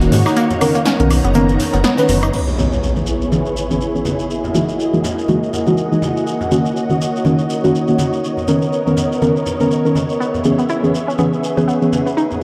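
Deep house at 122 BPM in C# dorian, hypnotic and deep, with a 16th-note swing and a dreamy mix soaked in plate reverb, cut from a longer piece. A dark, warbling chord stab sits up front through chorus and tape echo, its filter sweeping over the first 2.3 seconds, while a silky string machine with ensemble chorus and a nostalgic, lo-fi tape-like pad hold sustained chords beneath, the strings taking their own filter sweep from 2.3 seconds on. The chords move from Bmaj9 through C#m7, F#13 and D#m7 before circling back. A smooth, up-front synth bass, an overdriven deep house kit with a punchy snare and metallic hats, and a distant, roomy soul kit with a rolled-off top all play only in the opening 2.3 seconds alongside a round, bright analog pluck arpeggio, which returns near the close at 10.2 seconds. An electronic impact lands at 2.3 seconds, while ringing, hard-hand congas and a grainy, saturated shekere carry the groove throughout under the floating chords.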